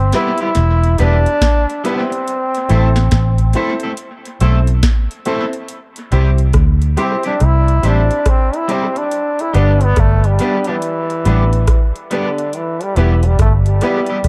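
A bright, punchy trombone with vibrato and dub echo opens over a dark, round, foam-muted electric bass in this laid-back roots reggae cut at 70 BPM in C major, moving from Em through Am to C, G and back to Em. A booming analog drum machine with a deep kick, crisp snare and metallic hats sits up front beside the bass. A slightly broken-up, twangy picked guitar with lush chorus and dub echo and a woody, worn, slightly detuned upright piano playing stabs fill in beneath, before the roomy trombone takes a solo from 5.7 seconds in an echo-heavy mix with light digital ambience.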